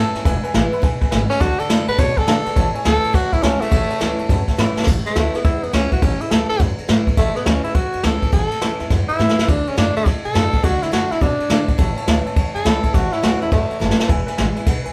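A raspy tenor saxophone opens this rowdy, rollicking rockabilly passage with a solo, carried over a bright upright piano, a picked steel-string acoustic guitar and a thumpy upright bass, and a brushed jazz drum kit joins almost at once. The tempo is a fast 208 BPM in 4/4 with a swung eighth-note feel, in A major, moving through E, D and A chords. Up front, the saxophone sounds gritty yet smooth on top, with scooped notes and a light vibrato, while the pizzicato gut-string bass is woody and dark. The drums sit forward too, with a punchy kick, dark cymbals, a rolled-off top and a roomy, distant small-room character, adding several fills along the way. The piano's brilliant, intimate tone, with its action noise audible, drops out at 4.8 seconds and returns at 11.8 seconds, while the full-bodied dreadnought guitar stays in the background with its finger squeak audible. The saxophone stops at 14.1 seconds as the rhythm section carries on briefly in a live, lightly reverberant room sound, in a clip cut from a longer piece.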